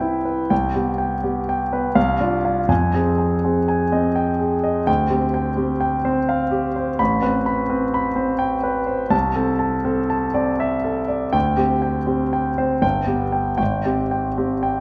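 Bathed in a moderate concert-hall reverb, this luminous, dreamy fragment of a longer impressionist classical work features a solo concert grand piano, intimate and up front with deep bass, long sustain and audible action noise, drifting in rubato 3/4 at 76-87 BPM through lush harmonies from Cmaj7 via Fm9, Am9 and C69 to D7sus4 and G before moving to Abmaj7 at 13.6 seconds.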